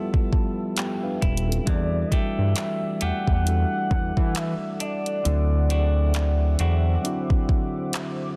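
A dense, heavily limited modern master with digital ambience frames this moody, sensual contemporary R&B excerpt at 67 BPM in E minor, where a mellow tine electric piano opens with a fill over Fmaj9#11 before settling into Em11 and D9, alongside arpeggios from a clean, picked semi-hollow guitar with digital delay, a deep, dark pad with chorus, reverb and sidechain pumping in the background, a soft-kicked electronic drum kit of handclaps and hi-hat up front, a sawtooth synth bass entering at 1.2 s, and a detuned, gliding portamento lead carrying the melody from 1.7 s.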